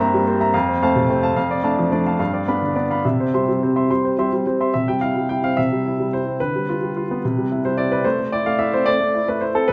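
A clear, intimate baby grand piano plays alone and up front through this graceful, playful classical-period sonatina fragment in a rubato 6/8, its long sustain and audible action noise ringing into a wet recital hall reverb as the opening phrase returns at 4.7 seconds, moving from C7/G through F, G7 and C before settling on Am.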